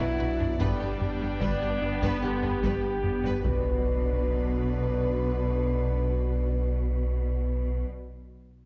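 Mellow, distant French horns hold sustained chords at the heart of this futuristic, relentless hybrid orchestral and electronic film cue in B minor, moving at 74 BPM over Bm and G. Around them, smooth violins carry a warm background melody above a lush second violin line, clear violas and a hollow, flute-like chorused pad. A very quiet trombone section and the horns fill out the harmony, while rich cellos, woody double basses and a deep sub bass anchor the low end. Close, dry taiko drums pound until 5.0 s, and a squelchy, resonant synth pluck arpeggiates until 3.4 s, when a very quiet electronic sub drop and impact take over, all set in a moderate scoring-stage reverb with a dark, warm production.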